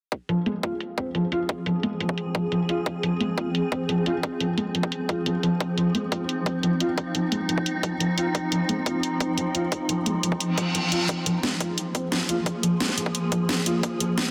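A straight, driving pulse anchors this dark, aggressive slice of technical drum and bass, with a tight, layered electronic kick and a cracking snare sitting up front while hi-hats and snare are softened by a low-pass filter and the kick is trimmed by a high-pass filter. From 0.3 seconds a felt-muted upright piano spins out arpeggios that sound mellow and boxy, its intimate action noise audible beneath a tape echo, a low-pass filter and a sidechain pump. A swarming, detuned drone enters at 1.1 seconds, holding sustained chords over an F minor harmony that slowly evolves through wave-folded, granular textures, its slow attack and long release breathing with the same pumping motion. A reverse cymbal rushes in at 10.5 seconds as a brief electronic accent. The whole passage sits in a lush hall reverb under a dense, heavily limited modern master, and it plays as a cut from a longer piece.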